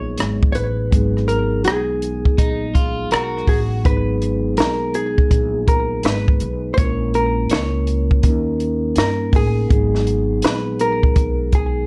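Jazz-hop excerpt at 82 BPM in G# minor with a mellow, nocturnal mood and swung sixteenths, where a dark, clean hollow-body jazz guitar carries the melody through slapback echo and plate reverb over ringing soft-mallet vibraphone, woody pizzicato upright bass and an up-front cocktail kit with punchy kick, high-tuned snare, rim click and hi-hat roughened by 12-bit sampler grit, while a slightly broken-up electric guitar adds a brief second line from 2.4 to 3.8 seconds as the chords move from G#m7 through A#m7b5 and D#7 back to G#m7 in a dark, light-reverb mix.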